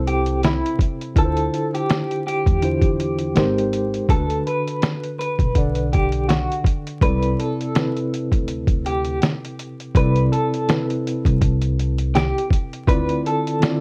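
A slightly broken-up electric guitar through a small old amp carries the melody with tremolo, a low-pass filter and plate reverb over a reedy, fast-tremolo electric piano and a woody pizzicato upright bass, joined at 0.1 s by a compressed, pitched-down sampler-style drum kit with a thumpy kick and fat snare up front, in this cosy, mellow lo-fi hip hop excerpt at 82 BPM with a light swing, moving through C6, Dm9, Abmaj7 and Bm7 amid vinyl crackle and light reverb until the bass stops at 13.2 s.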